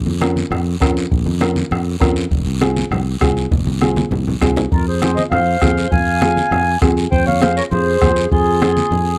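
Latin cumbia in F minor at 200 BPM, passionate and fiery, this short excerpt opens with a round, punchy fingered electric bass up front, low-tuned congas ringing softly in the background, a dark, woody upright piano, a soft-beater bombo and a raspy guiro, moving from Bbm to Fm. After a drum fill, a reedy, mellow accordion takes the melody at 4.7 seconds, joined by a clarinet with vibrato and subtone on a second line. The dry, close sound of a small room gives it a 1970s studio character.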